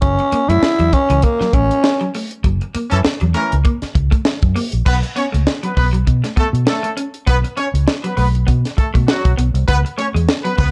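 A strutting, gritty funk excerpt at 100 BPM with a swung sixteenth feel opens on a brief, raspy, breathy growling tenor saxophone up front that drops out at 2.1 seconds, over a round, punchy, foam-muted fingered bass and a dry, tight drum kit with a high-tuned snare and vintage sampler grit, while a picked, slightly broken-up electric guitar riff sits low in the mix and a clear horn section with light vibrato carries a second line from 2.9 seconds, moving from an F#7#9 vamp through a chordless stretch to a closing C#m7, all in a dark, warm small-room production.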